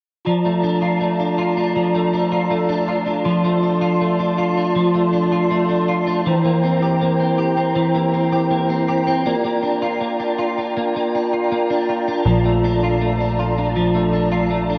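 Dream pop at 80 BPM in Bb Lydian, this short excerpt from a longer piece has an ethereal, floating mood. A soft, flute-like tonewheel organ opens the excerpt holding sustained chords, its chorus vibrato and faint key click heard through a stopped rotary speaker, joined almost immediately by a clean electric guitar up front playing picked arpeggios with an ensemble chorus and digital delay. The harmony drifts from Bbmaj7 to C7 at 6.3 seconds and Gm7 at 9.3 seconds before returning to Bbmaj7 at 12.3 seconds, where a punchy, funky analog bass enters with a fast-attack filter pluck on a low Bb. Its sawtooth and pulse-wave tone is evolving and decaying. A lush hall reverb surrounds the music, and the whole recording carries the worn, warbling pitch drift of old cassette tape.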